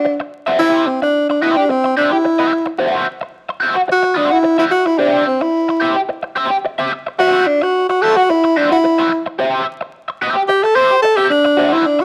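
A straight 4/4 funk groove at 109 BPM sets a sly mood in this 12-second section cut from a longer piece, where a breathy, close-miked tenor saxophone plays an intimate jazz solo with vibrato up front, while a bright, crunchy, picked electric guitar with overdrive and wah supplies accompaniment over chords shifting between D9 and C, the whole mix sitting in a large studio reverb with a touch of vinyl crackle.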